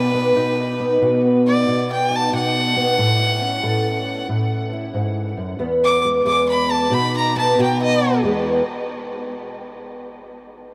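Laid-back and swaggering, this short slice of acoustic country blues swings easily in 4/4 as a rich, nasal fiddle with an airy bow carries the melody up front through tape echo, over a dark fingerpicked steel-string acoustic guitar treated with ensemble chorus, the pair bathed in a huge, dreamy reverb with a faint mains hum, the fiddle stopping at 8.2 seconds and the guitar at 8.6 seconds.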